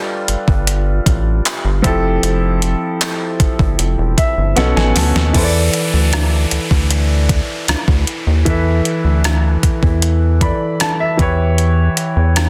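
Sensual and longing, this contemporary R&B excerpt at 77 BPM pairs a clear, polished grand piano playing chords from G7 through Fmaj9 and B7 to E7sus4 with a rubbery, nasal square bass and a crisp, overdriven 8-bit drum machine with a thumpy kick, handclaps and rim clicks, as a piano fill and drum fill lead into a second section at 5.3 seconds where an electronic downlifter enters, all in a dry, dense, heavily limited modern mix.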